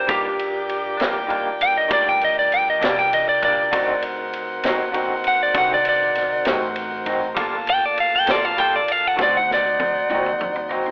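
This mournful, smoky slow blues in 12/8 opens with a slightly broken-up, compressed lead electric guitar soloing up front. Beneath it, a jazz-style horn section holds sustained chords with light vibrato and a smooth top, while a piping tonewheel organ sits in the background through a slow rotary speaker with a touch of overdrive. An upright bass adds a woody, thumpy low end from gut strings, kept low in the mix. Almost at once, a second electric guitar through a small old amp joins with twangy, lo-fi accompaniment and tremolo, and a vintage drum kit brings a punchy kick, high-tuned snare, dark ride cymbal and toms, ending in a drum fill from 9.2 seconds. The harmony moves from Ebmaj7 to D7b9 and Gm9 before returning to D7b9, all wrapped in light studio reverb and a rough home-demo mix with a telephone-like sound, cut from a longer piece.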